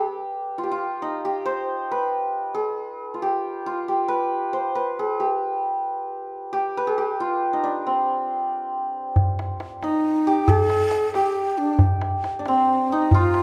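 In a straight 6/8 lilt, this soulful, longing passage of a Persian modal ensemble opens with a shimmering, ringing hammered santur carrying the melody alone, up front in a moderate recital hall. At 9.2 seconds a tight, dry tombak played with soft hands joins, and at 9.8 seconds a breathy, mellow end-blown ney adds an expressive second line with vibrato. The ney and tombak are close and present alongside the santur, and the passage is cut from a longer piece.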